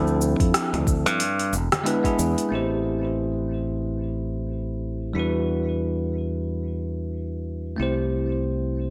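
A bell-like tine electric piano with digital delay and a filter sweep opens this relaxed, sunny sunset chillout excerpt at 91 BPM alongside a growly, tube-saturated fingered bass up front, while a smooth R&B kit of cabasa, congas, metallic hi-hat and rim click with gated reverb plays until 2.5 s, joined by a soft electronic kick from 0.4 to 2.2 s, after which the piano and bass carry on alone through chords moving from Dm9 and E7 to Am7, Em9 and C6 until 8.9 s, all within a plate-reverb sheen and bright 1980s-style digital production.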